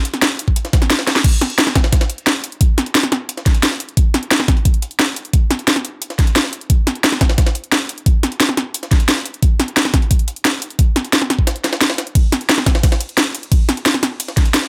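A dry, close, upfront drum sound fills this short cut from a longer drum and bass track, which runs at 176 BPM in a straight 4/4 with a futuristic, tense mood. The main drum kit is electronic and layered, with a cracking snare, bright hi-hats, ride and crash cymbals, all pushed through overdrive and re-recorded in a small room. Underneath sits a knocking electronic kick drum, also overdriven and layered, entering at 0.5 seconds and holding the low end firmly at the front. Further back, a sampler-style jungle kit adds gritty, pitched-up hi-hats and a high-tuned snare, compressed and tape-warm, with high-pass filtering thinning both. A quick drum fill at 1.1 seconds launches the main groove, and a brief break from 11.5 to 12.2 seconds interrupts the drive before the layered drums carry on to the end.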